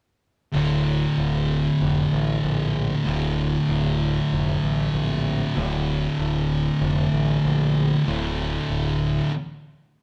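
A heavy, ominous metal passage cut from a longer piece, moving in a straight 4/4 feel at a steady mid pace. Two thick fuzz guitars play the riff together from 0.5 seconds, both picked and distorted: one sits up front with a warm tone, while the other stays in the background with a darker color. A growling fingered electric bass carries the low end beneath them, its overdriven sound bright, direct and amped. The harmony rests on a D5 power chord, and the band sounds as if it is playing live together in one room, wrapped in a moderate stone room reverb. Everything breaks off into a stop at 9.3 seconds, which holds until the cut at 10.0 seconds.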